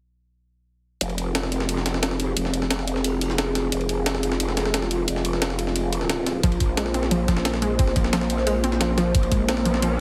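Tense and futuristic, this excerpt of dark technical drum and bass runs at 177 BPM in a straight 4/4 feel, rooted in F minor. A deep, moody analog pad holds sustained chords with a slow attack and long release, its chorus and sidechain pumping breathing under a growling, aggressive bass that wobbles through a formant filter with saturated overdrive and sits up front. A gritty, sampler-style breakbeat kit with a high-tuned snare and filtered ride cymbal runs alongside a layered electronic hi-hat from the start, while the harmony moves from Fm to Bb5 at 6.4 seconds. At that point a lush, warbling unison pluck enters with punchy, wave-folded arpeggios trailed by dub echo, and a knocking electronic kick, re-recorded in a small room, pushes forward in the mix. A background riser closes the passage from 9.4 seconds, all set in light digital ambience with a heavily compressed, radio-like sound and a faint mains hum.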